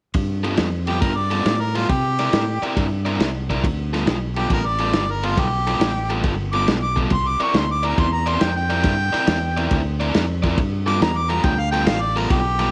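A clear, up-front harmonica with vibrato, scooped notes and a touch of overdrive takes a jazz-style solo over this gritty, swaggering electric blues shuffle at 138 BPM in G mixolydian, backed by a crunchy overdriven guitar riff entering at 0.4 seconds, a round, dark fingered bass, and a muffled vintage drum kit of punchy kick, snare and dark ride cymbal in a small room, with the chords moving between G9 and C9.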